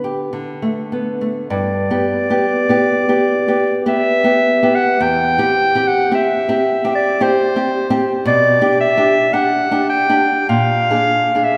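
A clear, smooth-topped clarinet enters at 1.5 seconds to sing a serene, lyrical classical melody over a small, warm, fingerpicked nylon-string guitar that opens alone, both up front in this rubato romantic duo in three-four, cut from a longer piece and bathed in the long, wet reverb of a church, with a Bb7 chord colouring the close at 10.5 seconds.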